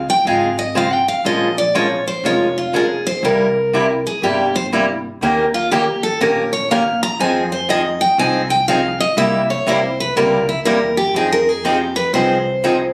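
Captured on a phone in the room, this short excerpt carries a light club reverb. It is virtuosic, swinging acoustic string swing in the jazz manouche style, in F minor at 121 BPM in 4/4 with a 65% swing on the eighth notes. A full-bodied dreadnought steel-string guitar takes the solo throughout, bright and up front, with finger squeak audible as it picks its melody between E4 and Bb5. Underneath, a dark, woody upright bass on gut strings plucks a thumpy line, while a warm parlour guitar comes in at 0.3 seconds with up-front picked accompaniment. A second parlour guitar with a bright, boxy, fresh-strung tone joins in the background at 5.2 seconds, and the harmony moves from Dbmaj7 and Bbm7 through C7 and Eb7 before settling between Fm7 and C7 until the cut at 12.9 seconds.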